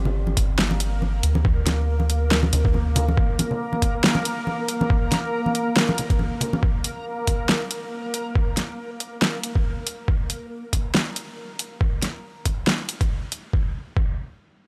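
Deep dubstep in a meditative, brooding half-time swing, where a round, soft dub sub bass sits in G minor for its first 3.2 seconds beside dreamy, reversed and detuned granular swells, small-room acoustic congas, and an up-front overdriven drum kit with a fat snare and hi-hat pushed by a muffled, thumpy pitched-down kick that carries on alone to 14.1 seconds in this fragment cut from a longer piece.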